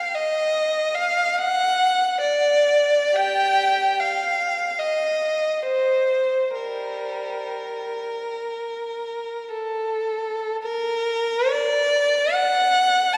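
A lone bowed violin opens this meditative classical piece in G minor, moving in free time with a rich, smooth, even tone and vibrato. The single player stays up front across a range from G3 to A5, while a wet church reverb with a 3.6-second decay gives the sense of hearing from further back in the room, deepening the lonely mood. After a new section begins at 10.6 seconds, the fragment is cut off at 13.2 seconds, an excerpt from a longer work.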